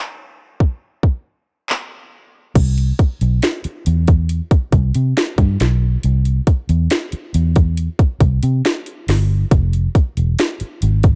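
The recording sits in a dark digital ambience, its production warm and rolled off with nothing above 11.0 kHz. This is a dreamy, tender slice of contemporary R&B in C major, moving at an unhurried 69 BPM in a straight 4/4, cut from a longer piece. An electronic trap drum kit arrives at 0.6 seconds, placed up front, with a hard-clipped kick, a sharp snare, metallic hi-hats, handclaps and a crash cymbal. At 2.6 seconds a vintage muted fingered electric bass joins, also up front, its amped, foam-muted tone round and dark as it moves between E1 and C3. From there, drums and bass play on together to the close at 11.2 seconds.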